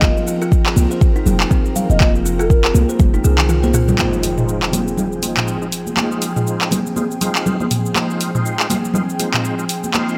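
A breathy bamboo bansuri melody opens this hypnotic, spiritual afro house excerpt at 121 BPM in F minor, its hollow tone carrying a vintage sampler grit and digital delay before it ends at 2.9 seconds. Beneath it, an ethereal detuned pad holds sustained chords with ensemble chorus and built-in reverb, pumping against the sidechain, while a woody kalimba plucks ringing arpeggios through delay. A deep, boomy 808-style bass anchors the low end, and a deep electronic kick sits up front alongside an afro-pop kit of handclaps, dark hats, shaker and toms, with bright, high-tuned congas sounding distant in a large room throughout. The groove swings on the sixteenths, and a drum fill from 3.0 seconds leads into a moment where the kick drops out just before the change. At 4.0 seconds the harmony moves to Fm7 as an electronic impact hits and a gritty, overdriven tonewheel organ enters with stabs, its slow rotary speaker, chorus vibrato and key click shaped by a low-pass filter sweep that runs to the end.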